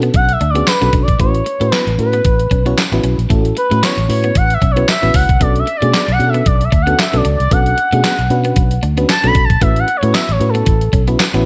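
Danceable and slick, this early-eighties boogie funk passage at 114 BPM in B minor rides a swung sixteenth-note feel over Bm7 and A69 chords. A thumpy, tape-flavored 8-bit drum machine with gated reverb, handclaps and hi-hat sits up front beside a dark, round, foam-muted fingered bass, while a mellow FM electric piano with tremolo accompanies and a clean, compressed picked guitar riff with subtle chorus sits in the background. Throughout, an expressive analog-style synth lead solo glides with portamento, vibrato, chorus and slapback echo, and a jingly, close-miked tambourine joins at 0.7 s.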